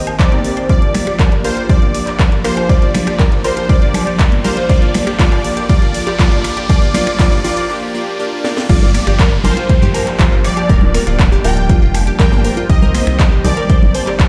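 Played through a big sound system in a bare stone room, this driving, emotional progressive house cut at 120 BPM in G minor opens with a build-up: a punchy, bright plucky unison lead carries the catchy melody with vibrato and dub echo, a very quiet crystalline wavetable pluck traces a high second line, and a glassy pluck arpeggio and background supersaw stabs both move through filter sweeps over a smooth, pumping analog pad. Beneath them an overdriven electronic kick, a house kit with cracking snare, claps, snaps, hi-hat and crash, and soft-handed woodblock and congas keep time while a riser climbs into a short break and drum fill. At 8.7 seconds the drop lands on Gm7 as a deep, round, dark analog bass enters and pumps under the full groove through the Cm7 change to the end of the cut.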